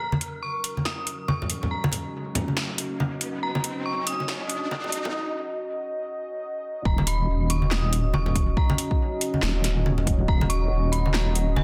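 A dense, heavily limited modern mix with light reverb carries this dark, meditative deep dubstep passage, cut from a longer piece and set in a swung, half-time feel. From the start, an eerie, inharmonic FM bell with chorus, tremolo and dub echo floats its melody high over a moody, detuned analog pad holding a sustained minor-seventh chord, while ringing acoustic congas struck with hard hands and an overdriven deep house kit of punchy snare, metallic hats and handclaps keep time. The opening builds as a filter sweeps across the pad and an electronic riser climbs, then a brief break follows at 5.1 seconds. At 6.9 seconds the drop lands, bringing in a wobbling, sawtooth-and-sine sub bass with chorus and tube saturation, sitting up front beside a layered, overdriven electronic kick. The result pairs a hazy, ghostly upper register with heavy, saturated low end.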